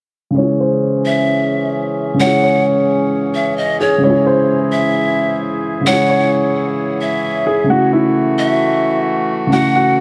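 A half-time 4/4 pulse at 131 BPM drives this dark, hard-hitting hip hop excerpt in C# harmonic minor, where a mellow, boxy grand piano plays low-passed accompaniment from 0.3 seconds, a second, open-sounding grand piano carries the filtered melody, a reedy accordion holds clear, low-passed sustained chords, and a breathy bamboo pan flute with chiff and vibrato enters at 1.1 seconds on a tape-echoed second line, set inside a huge ambient reverb with a filter sweep running through the passage.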